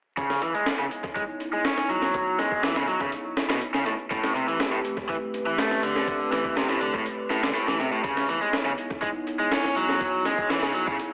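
An up-front, bright, overdriven electric guitar riff, roughened by vintage 12-bit sampler processing, a low-pass filter and analog delay, drives this raw, gritty breakbeat excerpt at 122 BPM in C# minor, backed by a thumpy, compressed sampler-style drum kit with a high-tuned snare and its own analog delay, a very quiet electronic shaker, and a deep, moody, detuned analog pad sustaining C#m9 and Am9 chords with chorus and sidechain pumping, the mix as a whole echo-heavy with plate reverb, vinyl crackle and a telephone-like tone.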